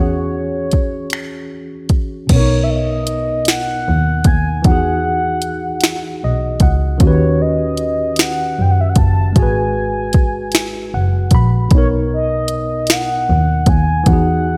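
Warm and sensual, this slow six-eight R&B fragment floats on a round, horn-like sawtooth synth lead that carries the melody with soft attacks, sustained notes, vibrato, chorus, analog delay and a filter sweep. A worn, slightly out-of-tune electric piano with light overdrive supplies lush extended chords and adds fills from 5.8 s and 10.5 s, while a woody, bowed double bass gives a dark, soft-edged foundation. An up-front electronic drum kit enters at 0.7 s with a soft kick, a sharp snare, dusky hi-hats, finger snaps and crash, all gritty with overdrive, inside a light reverb.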